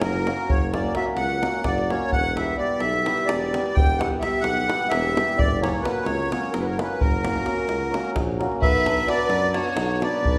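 From the start, a reedy, sweet accordion with a light tremolo tuning carries the melody up front, over a shimmering, ringing hammered dulcimer, a warm, distant tuba bass and a tight, dry davul, in a virtuosic yet bittersweet Balkan wedding-band piece in 7/8. At 8.6 seconds a single bowed violin joins as a second line, rich and expressive with vibrato, portamento and a soft attack. The piece sits in a reverberant recital hall and is cut from a longer performance.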